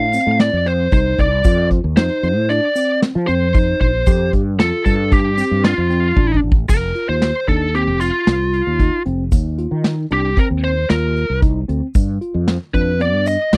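A dry, close studio sound with a 1970s character frames this driving, bright excerpt of progressive instrumental band music in 5/4. An overdriven, biting lead guitar carries the melody up front over mellow tine electric piano arpeggios and a round, dark fretless bass coloured by analog chorus. A vintage kit played with brushes adds punchy kick and dark, smooth cymbals, a grainy egg shaker sits distant in the background, and a drum fill at 6.2 seconds leads into a new section at 6.7 seconds as the harmony travels from F7 toward G7.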